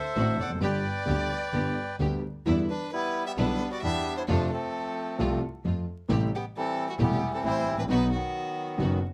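Sultry and melancholic, this rubato tango in E minor at 132 BPM opens with a reedy, up-front bandoneon melody bathed in plate reverb, joined by a warm violin second line rich with vibrato and portamento. At 0.2 seconds a dark, mellow concert grand piano enters with audible action noise and deep bass, alongside biting, earthy string section stabs and an intimate bowed double bass played sul tasto with an airy tone. Light reverb and vinyl crackle frame this passage cut from a longer piece.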